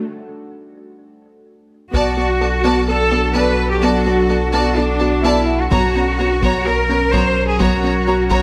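A straight 4/4 pulse at 127 BPM drives this relentless, futuristic hybrid orchestral and electronic film cue, which opens with an evolving wavetable pad alone, its morphing chords colored by chorus, phaser and built-in reverb. At 1.9 seconds the full ensemble arrives over Bm7 and later F#/B: lush, vibrato-rich violins carry a second line, an up-front, focused cello section and a punchy, pitch-dropping sub bass anchor the low end, a very quiet viola section adds soft-edged accompaniment, and a tine-like, warbling FM synth pluck spins mellow arpeggios through tape echo in the background. Heavy-stick taiko hits land close and dry from 1.9 to 2.8 seconds and return at 5.7 seconds, all set in a moderate scoring-stage reverb.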